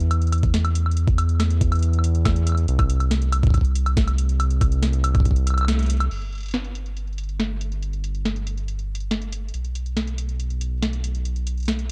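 A round, deep analog bass and a booming analog drum machine open this wistful, intricate IDM excerpt in straight 4/4. The bass sits up front with a mellow, sustained tone blending sawtooth, sine and triangle waves, detuned and evolving, with a fast attack, low in the register. The drum machine carries a tonal snare, metallic hats, crash cymbal and woodblock, all softened by low-pass filtering. A gritty, compressed, pitched-up electronic kick joins at 0.4 seconds, thumpy and up front with a sampler-style character, and plays until 5.4 seconds. The band hits an accent at 5.7 seconds, and a new section begins at 6.1 seconds with bass and drum machine continuing to the end. Digital ambience frames a dark production, as this short passage is cut from a longer piece.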